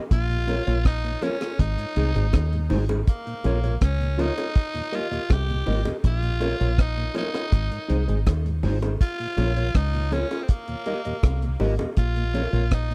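Opening on a dark, clean electric guitar with analog chorus and tape echo, this meditative, hypnotic roots reggae excerpt at 81 BPM in Bb dorian sets a raspy, gritty tenor saxophone melody with tape echo over a round, foam-muted fingered bass, a dry, up-front drum kit of tight kick, hi-hat and rim click, a mellow tonewheel organ with key click and slow rotary speaker in the background, and distant, high-tuned bongos, all cycling through Bbm, Ab and Eb in a close, 1970s-style small-room recording.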